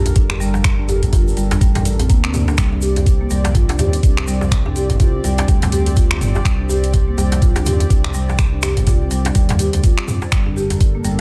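In a swung 4/4 groove, a knocking electronic kick sits up front while an overdriven deep house kit of finger snaps, metallic hats and toms, a tight, cracking djembe and a grainy, distant egg shaker give this earthy, hypnotic afro house excerpt its drive. A buzzing marimba with soft mallets plays woody, round arpeggios through tape echo above a smooth sawtooth synth bass and a detuned analog pad holding mellow sustained chords with chorus, all three pumping with sidechain. The harmony shifts from Gm to C5 and returns to Gm at 10.3 seconds, in a mix with little reverb.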